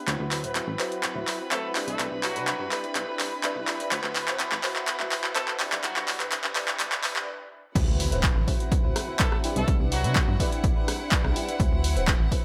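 Filtered disco house at 125 BPM in D mixolydian, sunny and feel-good, where a drum-machine fill with handclaps, hats and rim clicks builds under pumping violin chords, a twangy clean guitar riff with sampler grit, dark phased piano and a plucky, funky analog bass, while a bright horn section carries the melody with delay from 1.5 to 6.2 seconds and returns briefly at 9.2 seconds. At 7.8 seconds, after a brief stop, a punchy, tape-warm kick and a very quiet impact launch the drop as the music moves between D13 and Cmaj7.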